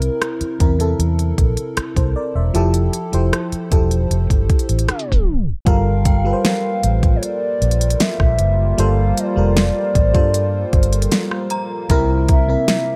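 A straight 4/4 groove at 77 BPM opens this moody, late-night contemporary R&B excerpt in G dorian. It is carried by an up-front electronic drum kit with a soft kick, fat snare, rim click and smooth hi-hats, alongside a round, punchy, foam-muted fingered electric bass. An FM electric piano with a soft pad layer supplies lush, dreamy chords through a chorus effect, moving from C7 to Fmaj9, then to Gm9, and back to C7. A tape stop cuts in at 4.9 seconds, just as a hollow, woody clarinet-like synth lead enters with vibrato, chorus and delay. In the second section a faint synth chime adds inharmonic, ringing tones with tremolo and ensemble chorus in the background, and at 6.7 seconds a deep, warbling ambient pad arrives with sustained chords and built-in reverb.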